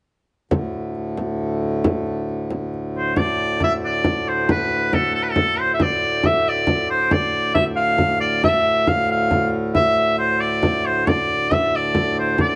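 A moderate plate reverb with a 3.0-second tail lends this excerpt from a longer piece a mysterious, ancient air, as a medieval dance in D dorian moves in a straight 6/8 at 91 dotted-quarter beats per minute. From 0.5 seconds a reedy, breathing hand-pumped harmonium holds a low drone while a close, dry frame drum keeps the pulse with a warm acoustic tone. At 3.0 seconds a bright shawm enters up front as the solo voice, its folk-style melody marked by vibrato and scooped notes within a roomy, slightly distant space.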